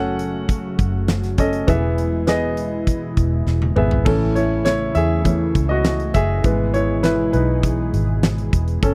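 A steady, straight 4/4 pulse drives this short, hopeful cut from a piano-driven pop piece, moving from F#m to E before brightening onto A and E/G#. A clear, polished baby grand sits up front with a short sustain, carrying the accompaniment before taking a solo from 4.1 seconds. Underneath, a foam-muted fingered electric bass gives a dark, round low end, while a smooth, detuned sawtooth pad with a chorus effect holds soft-edged sustained chords further back in the blend. An arena-sized acoustic drum kit enters at 0.2 seconds with a punchy kick, fat snare and bright cymbals, and a drum fill from 3.5 seconds lifts the music into the second section. The sound is dry and close, in the manner of a 1970s studio, with little reverb, keeping the instruments intimate and direct.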